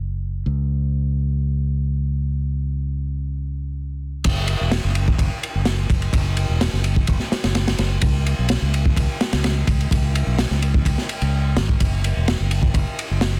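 A straight 4/4 breakbeat groove at 127 BPM, this swaggering, gritty excerpt opens with a growly, bright fingered electric bass sitting up front on its own, ranging from E1 to C#2. At 4.2 seconds the drop arrives as a crunchy, saturated breakbeat kit joins with tight kick, medium-tuned snare, ride and crash, its dark cymbals and rolled-off top giving it a small-room feel. The mix is dry and dense, with a heavily limited modern master.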